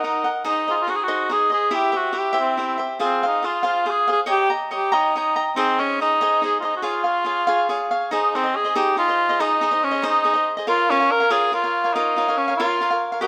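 A straight 6/8 lilt at 94 BPM, counted in dotted quarters, carries this romantic, proud excerpt of Mexican folk music, which shifts from D-flat major to A-flat major at 8.1 s. A warm, classical-style cor anglais sings the solo melody up front with vibrato, while a bright, crisp acoustic cavaquinho supplies picked accompaniment, also up front, through chords such as Ab, Fm, Eb7, Db and Bbm. Close, detailed microphones capture both instruments inside a moderate recital-hall reverb.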